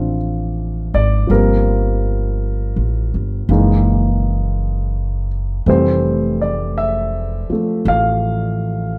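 Romantic and tender, this short jazz ballad fragment moves in a swung 4/4 as an up-front concert grand piano, with deep bass and short sustain, plays chords that pass from Dm9 through Gm11 and Gb13 to Fmaj7 at 5.7 seconds, while a woody, growly pizzicato upright bass sits close beside it in a lightly reverberant room.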